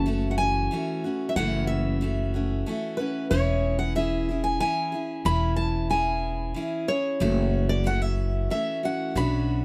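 Reflective and haunting, this short excerpt of acoustic folk moves at 92 BPM in a straight 3/4 lilt, played by a small group of two steel-string acoustic guitars and upright bass. One picked guitar carries the melody high in its range, between B4 and B5, with a warm, auditorium-sized voice. The second picked guitar supplies the accompaniment from F#2 up to G#4, its fresh strings giving a bright, full-bodied dreadnought sound, with finger squeak audible along the way. Underneath, the pizzicato upright bass sits low between E1 and B1, woody, growly and thumpy. All three play throughout the 9.6 seconds, up front in a dry room with little reverb, over chords that move from F#m7 to C#m/E at 3.3 seconds and return to F#m7 at 7.2 seconds.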